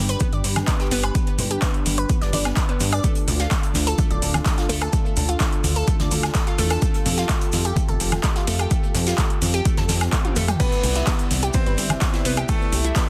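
Euphoric, uplifting progressive house excerpt in which a punchy overdriven electronic kick drives a layered deep house kit with metallic hats and a background unplugged kit with bundle sticks, a funky ring-modulated analog bass, a detuned analog pluck arpeggiating through chorus and delay, and a mellow sustained analog pad, all pumping under sidechain alongside soft-handed congas, before a faint electronic swell and a drum fill at 10.1 s bring in a brilliant grand piano melody at 10.6 s over G, Dm, Fadd9 and Cmaj7 chords in a dense, heavily limited mix with light reverb.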